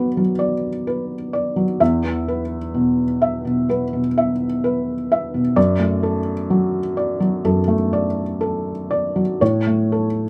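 Rubato timing lends this short neoclassical minimalist piano passage a loose, breathing sense of its 4/4 metre. A felt-muted upright piano plays alone from start to finish, across a span from E2 to E5, and the mood is wistful and reflective. Its tone is soft and mellow, with short sustain and audible action noise that makes the performance feel intimate and natural. Close, detailed microphones place the instrument up front, with a light reverb around it. The harmony moves from Bm to E5, then D/F# at 5.6 seconds, arriving on A at 9.4 seconds, and the music is cut from a longer piece.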